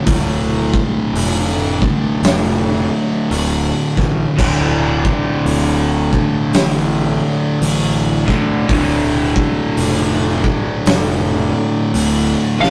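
Two dark, picked fuzz guitars open this ominous, sludgy stoner and doom metal passage, churning out a D minor riff in the background at a crawling 56 BPM in 4/4 with a swung feel. A growly, overdriven fingered bass sits up front beside them, while an oversized, low-tuned acoustic drum kit pounds out kick, fat snare, hi-hat and dark crash cymbal with a pumping, saturated big-room character. At 4.4 seconds a bright, crunchy, double-tracked overdriven guitar joins the riff in the background, thickening the wall of distortion. A drum fill lands at 12.5 seconds, and at 12.6 seconds a distorted fuzz lead guitar breaks in up front on a single high F just as the excerpt cuts off. The whole thing carries the rough, gritty sound of a rehearsal room, with light reverb and tube saturation.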